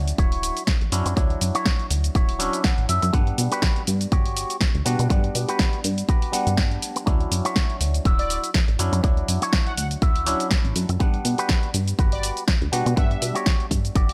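A filter sweep runs across this whole excerpt of joyful, feel-good filtered disco house, heard in a digital ambience at 122 BPM in 4/4 with a light swing on the sixteenths, set in D major. An up-front, punchy electronic kick, layered and tape-warm with the character of a large room, anchors the groove beside an analog drum machine's snare, hi-hat and cabasa, whose hats and percussion pump against the sidechain. Underneath, a plucky, funky analog bass of sawtooth and pulse tones decays darkly with a moving notch and tube saturation, while a stringy, percussive auto-wah clav through a combo amp adds phaser-tinted accompaniment, and a dark, compressed envelope-filtered guitar plays a fingered riff. A clean electric guitar fill appears at 2.4 seconds. At 8.2 seconds a fat, nasal, detuned synth brass melody enters in the background with chorus, vibrato, cassette-tape colour and dub echo. The harmony alternates between Dmaj9 and Gmaj7.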